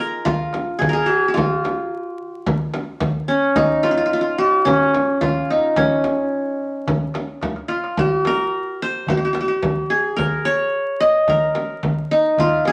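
A mellow, bright-edged qanun, played with fingerpicks and sitting up front, opens this hypnotic, soulful Arabic maqam ensemble passage in F maqam bayati at 109 BPM in a straight 4/4. A crisp, high metal-shell darbuka struck with soft hands joins almost at once, alongside a deep, close and dry frame drum, and the drums break into a brief fill from 7.4 to 8.0 seconds. Moderate studio reverb and vinyl crackle colour the sound of this short cut from a longer piece.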